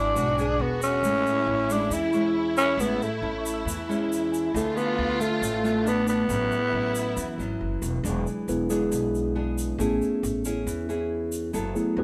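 A breathy, raspy tenor saxophone with a growling, scooped-note delivery carries the melody up front in this relaxed, sophisticated bossa nova excerpt at 137 BPM in A major, joined by a lush, bowed violin section on a second line. Fingerpicked nylon-string guitar, a lightly overdriven tine electric piano through a combo amp, woody pizzicato upright bass and a grainy tube shaker fill out the live-room sound with moderate reverb. Once the saxophone and violins drop out, the electric piano takes a solo at 8.0 seconds over E7 and Amaj7 chords.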